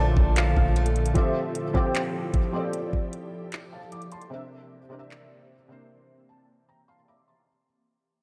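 Soft and intimate in light reverb, this brief, fading contemporary R&B excerpt at 76 BPM sets a romantic, smooth mood with a felt-muted upright piano's mellow chords and audible action noise over an ethereal, warbling pad. A bright picked steel-string acoustic guitar arpeggio stops at 1.7 seconds, and a deep, boomy 808-style bass is heard only until 1.1 seconds. A smooth electronic drum kit of knocking kick, metallic hi-hat and handclaps drops out at 5.3 seconds, after which a felt piano fill closes the excerpt over the pad, the whole passage moving through a Bbmaj7, Fmaj9 and C7 progression.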